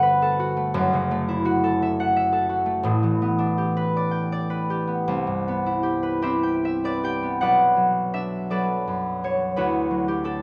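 A ringing, bright concert harp sits up front in a moderate recital-hall reverb, playing a wistful, gentle classical solo in B minor, fingerpicked in a rubato 6/8 at roughly 50-59 BPM across a span from F#1 to G5, moving through lush chords such as Gmaj9, A9sus4 and Cmaj7 before settling toward Bm7 at 7.4 seconds in this short fragment cut from a longer piece.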